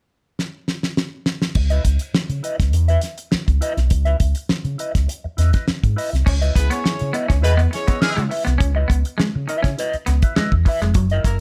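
A dry sound with light reverb opens this sly, hypnotic funk excerpt at 102 BPM in C# dorian, where a damped 70s drum kit with a fat snare and tight kick starts with a fill at 0.4 seconds before the round, dark fingered bass arrives up front on a C#m9 chord at 1.6 seconds alongside a clean, shadowy electric guitar filtered through wah. At 6.3 seconds a compressed, hollow-body semi-hollow guitar adds a picked riff, soon joined by a mellow horn section playing a smooth, tight second line in octave doubling.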